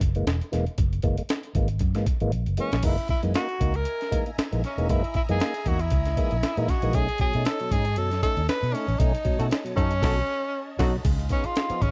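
A dry, close 1970s-style studio sound frames this gritty, strutting funk cut, where a compressed, pitched-up breakbeat drum kit with a thumpy kick and high-tuned snare and a dark, foam-muted fingered electric bass drive from the start, a fat tonewheel organ adds overdriven stabs through a slow rotary speaker, a breathy, intimate tenor saxophone takes the melody from 2.6 seconds over shimmering string-machine violins in the background, and a mellow horn section adds a second line from 9.4 seconds during a band accent.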